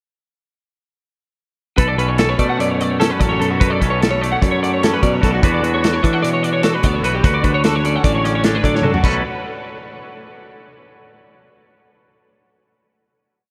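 Soaked in a huge ambient reverb, this short math rock and midwest emo piece sounds dreamy and spacious, its intricate, restless energy blurred into a lingering haze. It moves at 299 BPM counted in eighths, in a straight 9/8 in B minor, with the band entering together at 1.8 seconds and cycling through Bm9, E7sus2 and Dmaj7. Up front, a clean, compressed electric guitar repeats a high picked ostinato of arpeggios, shimmering through ensemble chorus and delay. Beneath it, a second twangy electric guitar rolls through fingerstyle arpeggios with a subtle chorus, while a bright, direct-and-amped picked bass stays locked to the kick drum. The acoustic drum kit, dark and smooth with a rolled-off top, a medium-tuned snare and a tight kick, drives the 9/8 groove with crash, hi-hat and toms, and a drum fill at 8.7 seconds leads into a final Bsus2 chord at 9.0 seconds that rings on in the reverb.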